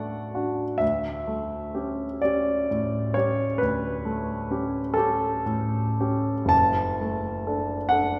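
A solo grand piano carries this romantic classical nocturne, its tone clear and polished, with the mechanical noise of the action audible beneath the notes. The mood is nostalgic and serene. The pulse moves slowly at 36-45 BPM in dotted quarters within a 12/8 metre, and the playing is shaped with rubato. The piano sits present and intimate, spanning F#1 to A5, while a wet concert hall reverb with a 2.3-second decay places the listener further back in the room. The harmony opens on D, shifts to A7/D at 0.8 seconds, and settles on D/F# at 6.5 seconds, all within a brief 8.2-second passage cut from a longer piece.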